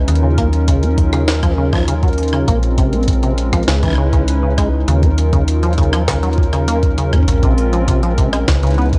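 A hollow, flute-like pad and a metallic FM bass open this melancholic IDM fragment together, the pad holding soft, detuned chords coloured by chorus and a vintage 12-bit sampler grit while the bass strikes with a fast, decaying digital attack. Moments later, at 0.1 seconds, a pitched-up jungle-style sampler kit arrives with hi-hat, rim click and a medium-tuned snare, compressed and tape-warm at a low level beneath the other parts. A deep acid bass follows, playing rubbery, resonant sawtooth arpeggios with a filter pluck and saturation, its dark tone trailed by tape echo. At 0.4 seconds a thumpy, gritty electronic kick joins, sitting as loud as the FM bass. The harmony cycles through minor ninth chords, Ebm9 to Bbm9 to Dbm9 and back, giving the intricate layers a wistful pull. The whole is set in a dry digital ambience with a cassette-tape character, and it is cut from a longer piece.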